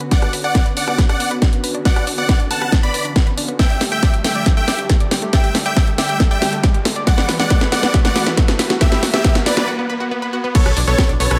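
A straight 4/4 pulse at 138 BPM drives this emotional, uplifting trance build-up in B minor, cut from a longer piece. A punchy, up-front electronic kick and a house drum kit with a cracking snare, crash cymbal, hi-hat and rim click carry a drum fill that runs until a short break at 9.7 seconds. A huge, euphoric supersaw lead sings the melody over a quieter, catchy unison lead on a second line. Beneath them sit a lush, airy pad on sustained chords with chorus and phaser, and a round analog pluck playing arpeggios through tape echo under a filter sweep, both pumping with the sidechain. A very quiet riser sounds through the middle of the build, and a funky, wave-folded analog bass lands on B1 at 10.7 seconds. Chords move from Bmadd9 through Gsus2 and Emadd9 back to Bmadd9, all set in a moderate digital room reverb.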